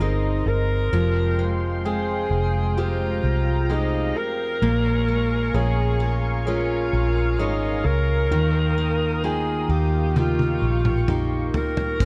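A dark, warm small-room sound frames this heartfelt, hopeful pop ballad fragment, where a raspy, growling alto saxophone sings the melody over a clear concert grand piano, a thick, warbling unison pad with chorus, full-bodied picked acoustic guitar arpeggios carrying delay and a round, foam-muted fingered electric bass, until a loose indie drum kit with a punchy kick enters at 10.2 s for a fill across hi-hat, kick and toms.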